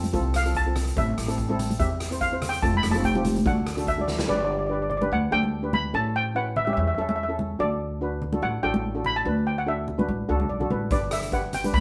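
Bouncy and sunny, this calypso excerpt moves at 145 BPM with a light swing, opening with a lead steel pan solo, its metallic shimmer close, dry and up front, over growly, woody pizzicato upright bass, soft damped congas and a boomy, airy street-band drum kit that plays a fill from 4.0 seconds and then drops out. A mellow double-seconds pan plays softly beneath the lead from the very start, and after the music settles into D major at 4.3 seconds, the lead adds its own fill from 10.1 seconds before the drums return at 10.9 seconds. The band sounds like it is playing live in one room, with moderate studio reverb.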